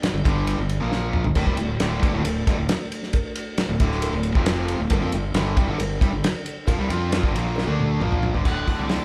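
A straight 4/4 classic rock groove drives this confident snippet from a longer piece, carried by a dry, up-front 70s drum kit with a fat snare, tight kick and rolled-off top, rounded out by a brief fill near the start and another at 7.6 seconds. A distant cowbell sits in the background from 1.4 seconds to just past 8 seconds, while a fuzzed, growly fingered bass punches underneath. Two overdriven guitars play the riff through power chords on G, B-flat, D and F: one picked and biting, the other a hollow-body guitar set further back. A very quiet tonewheel organ holds sustained chords with key click, chorus vibrato and a slow rotary spin until just before the end. At 8.5 seconds a dark, bluesy lead guitar enters with wah and distortion, and the whole band sounds as if playing live together in one large studio room with moderate reverb.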